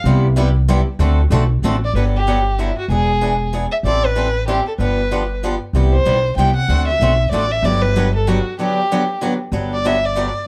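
A swung 3/4 pulse at 190 BPM drives this charming, lively jazz manouche excerpt in G major, anchored by a woody, thumpy pizzicato upright bass on gut strings, placed up front, and a bright, boxy swing-style guitar picking through chords from Cmaj7 and D7 into Gmaj7, E7 and Am7. A picked steel-string acoustic guitar with fresh strings and an auditorium body drops out briefly and returns at 5.7 s, while a bowed violin enters at 1.8 s with expressive vibrato, portamento and a smooth top, sitting up front in plate reverb. A break arrives at 8.6 s, and the production is dark and warm with light reverb.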